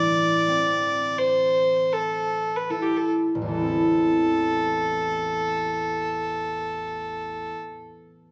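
Longing and haunting, this fragment of a Celtic slow air drifts in A minor at 36-47 BPM in a rubato 3/4, easing down in tempo over its first 3.5 seconds. A single bowed fiddle carries the melody with a nasal, reedy gut-string tone until about 7.6 seconds, while a fingerpicked concert harp rings out below as accompaniment until about 7.8 seconds, both set up front. A moderate recital hall reverb gives the pair an acoustic glow and a sense of space.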